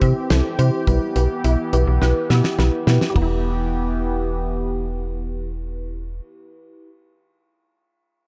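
Synth-pop in E minor at 105 BPM, this brief excerpt from a longer piece carries a melancholic, nocturnal mood, its tuning set slightly low at A4 = 435 Hz. A lush, dreamy FM electric piano with a soft pad layer plays chorused accompaniment in a mellow register, over sustained chords from a smooth analog pad with a long release that stops at 6.2 seconds. Set back in the mix, a juicy, squelchy blip pluck spins arpeggios through phaser, low-pass filter and digital delay, while a snappy, metallic-edged FM bass sits up front. A dry, damped 70s drum kit with dark cymbals, a fat snare and a tight kick plays hi-hat, kick, ride and snare, fitting in a fill from 2.0 seconds before dropping out at 3.3 seconds. A filter sweep runs through the opening as the harmony moves from C to Em/B, settling on Em for the second section, all within a dark production with light reverb and studio ambience.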